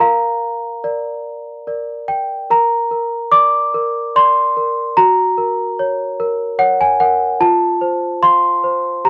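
A bell-like, delicate, sweet celesta plays alone and up front through this dreamy, tender classical lullaby in Bb major, swaying at 73 BPM in an unhurried 3/4 across its range from F4 to D6, with the harmony moving from Bb to Gb at 5.0 seconds and settling on F, all captured in a dry, close 1970s-style studio sound with light reverb in a brief cut from a longer piece.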